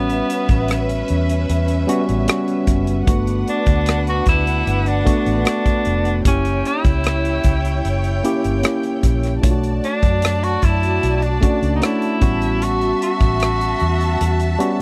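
A clear, up-front tenor saxophone carries the smooth, cinematic melody of this lush 1970s-style soul excerpt at 76 BPM, over soft-attack bowed strings with light vibrato, a worn, slightly out-of-tune tine electric piano, a dark, round, foam-muted fingered bass and a punchy acoustic kit of kick, hi-hat and rim click, all captured in a dry, close studio sound as the chords move from A13 through Gmaj9, F#7b9 and Bm9 back to A13 at 12.2 seconds.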